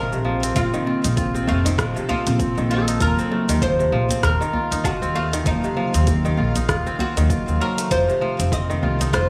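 This organic downtempo cut, taken from a longer piece, feels earthy and meditative, settling into a gentle swing on the sixteenths. A bright, plectrum-plucked oud carries the melody with its double-strung, fretless voice, while a crisp, ringing kora spins fingerpicked arpeggios beneath it, both trailed by digital delay. Muted, felt-like synth keys sit dark and intimate in the background, coloured by chorus, delay and sidechain pumping. A pizzicato upright bass with a woody, steel-string tone that also pumps against the kick arrives at 0.1 seconds, and a very quiet, bowed-like drone with slow attack, vibrato and a tense, string-like edge follows at 0.2 seconds. The rhythm comes from a produced deep house kit of cabasa, hi-hat, rim click and woodblock, a hard-handed djembe set deep in the background, and a punchy, layered electronic kick arriving at 0.6 seconds. Over a small-room ambience, the harmony moves from Bbmadd9 to Ebm7 and then F7.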